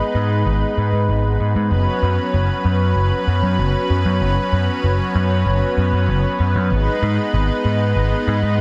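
Synthwave at 96 BPM in a straight 4/4, driving and cinematic, cut from a longer piece. A lush, detuned unison pad with chorus holds sustained chords, its soft attack and airy noise layer spread over sawtooth and square tones, while an overdriven picked electric bass enters at 0.1 seconds, dark, round and punchy up front. The harmony moves from G#m to F#sus4 at 1.7 seconds and returns to G#m at 6.7 seconds, the mix sitting in a moderate digital scoring-stage reverb within a dense, heavily limited modern master.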